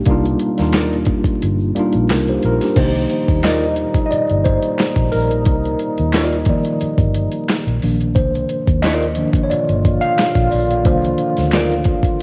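This short excerpt, cut from a longer piece, has the vinyl crackle of a home cassette recording, with light reverb over a late-night, introspective neo-soul and R&B groove in a gently swung 4/4. A worn, slightly out-of-tune tine electric piano sits up front, its tone coming through built-in speakers as the music opens on a Cm11 chord, before taking a solo from 2.8 seconds. Beneath it, a gritty, compressed sampler-style drum kit plays a thumpy kick, a medium-tuned snare, hi-hat, handclaps and crash, with the kick dropping out between 1.4 and 2.8 seconds. A foam-muted, round fingered electric bass moves in a low, dark register, while a clean, picked hollow-body jazz guitar adds a second line higher up. From 2.8 seconds a close-miked trombone section comes in with clear, lightly vibrato-tinged stabs, and an egg shaker with finger snaps and group handclaps ticks along in the background of a small room.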